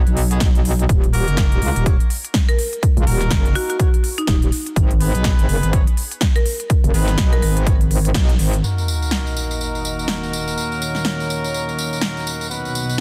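A metallic, saturated wobble bass opens this bouncy, aggressive bass house excerpt at 124 BPM in Eb minor, joined at once by an overdriven big-room drum kit with crisp hats, a punchy up-front electronic kick, swung sixteenths and pumping jazz-style horn stabs, while a bright, woody hard-mallet marimba carries a delayed melody from 2.5 to 7.5 seconds before a band accent at 8.2 seconds gives way at 8.6 seconds to a deep, moody analog pad and an electronic sub drop impact in a dense, heavily limited mix.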